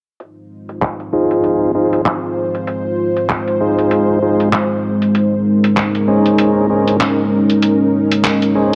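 A compressed, pitched-down boom bap sampler-style drum kit with handclaps and low-passed hi-hats opens this funky, swaggering glitch hop fragment at 0.2 seconds, its sound moving through a filter sweep. It is soon joined by a dark, detuned sawtooth analog pad with a sub octave and chorus holding moody sustained chords that move from Fm7 to Bbm11 at 5.2 seconds, while a thick, overdriven tonewheel organ with key click, vibrato and a gritty edge punches out percussive stabs through a low-pass filter and dub echo, the whole set in an echo-heavy mix of digital chamber reverb.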